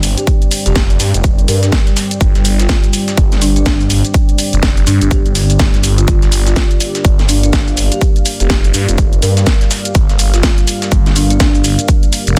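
A swung 124 BPM groove in 4/4 drives this bouncy, aggressive bass house cut in G minor, where an overdriven, punchy electronic kick sits up front beside a swirling, saturated phased detuned saw bass, while a garage kit adds a cracking snare with hi-hat and shaker, a gritty dusty soul sampler-style kit lurks very quietly beneath, a moody dark analog pad and a wave-folded deep ambient pad breathe with sidechain pumping in the background, and a woody folk marimba with soft mallets plays a rustic, delayed melody from 0.2 to 11.6 seconds, all inside a dense, heavily limited modern master.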